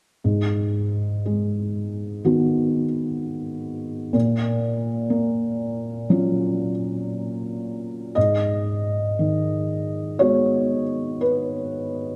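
A single felt-muted upright piano sits up front in a moderate concert hall, its reverb of about 1.9 seconds trailing behind the notes. This is a short excerpt of wistful, intimate neoclassical minimalist piano in G# dorian, tuned to A4 = 439 Hz. The tempo drifts between 55 and 64 BPM in 4/4 with a rubato feel. The piano plays alone from 0.2 to 12.2 seconds, ranging from G#2 to D#5, and its tone is dark and mellow, softened by thick felt, with the mechanical noise of the action plainly audible. The harmony rests on G#m7, moves to F#maj7/A# at 4.1 seconds, and returns to G#m7 at 8.2 seconds, where a new section begins and runs to the end.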